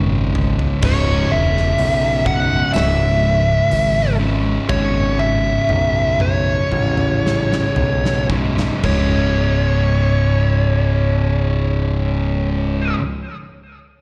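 Brooding and heavy, this stoner and doom metal excerpt puts a dark, double-tracked fuzz guitar riff and a growling, overdriven picked bass up front, with a compressed fuzz lead guitar carrying the melody through wah, slapback echo and digital delay, while a big acoustic rock drum kit with a punchy kick and rolled-off top plays fills as the music slows down before dropping out at 9.1 s, all heard as a live gig through the venue's PA in recital hall reverb.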